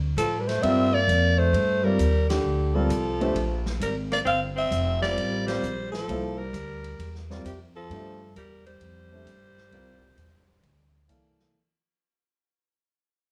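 A swung 4/4 feel on a vintage drum kit's hi-hat, ride cymbal and snare, soft and rolled-off on top, carries this searching, hypnotic modal jazz excerpt, where a woody pizzicato upright bass sits up front, a growling, raspy alto saxophone leads with scooped notes over a tenor saxophone second line with light vibrato and a smooth top, and a polished upright piano accompanies from 0.6 seconds, the band striking accents at 2.2 and 5.4 seconds as the passage fades out in a large studio reverb.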